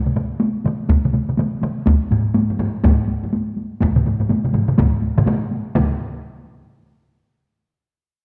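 Japanese traditional taiko ensemble music, powerful and ceremonial, in 4/4 at 124 BPM with a swung sixteenth-note feel, where a solo taiko drum struck with heavy sticks opens together with a hard-stick taiko ensemble, a close, dry heavy-stick ensemble layer joins at 0.9 s and another hard-stick group arrives at 2.1 s, all placed up front in a scoring-stage reverb before this short fragment shifts into a new section at 5.8 s.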